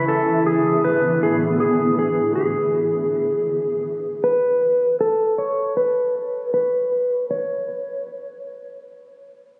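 A clean electric lap steel guitar carries the melody up front, its fingered slide tone rising in volume swells through a low-pass filter and tape echo from 0.0 to 8.4 seconds. This short excerpt of dream pop sits at 79 BPM in a straight 4/4, with a floating, dreamy mood. Beneath it, a cloudy, evolving granular pad blends detuned sine and sawtooth voices with a slow attack and long release, holding an E5/A chord with its own reverb until it stops at 2.7 seconds. After that point the guitar carries on over unaccompanied space, while a filter sweep runs through the whole passage. The sound carries the character of a phone recording made in a room, wrapped in a huge ambient reverb with a 4.5-second tail, club-like reflections and compression.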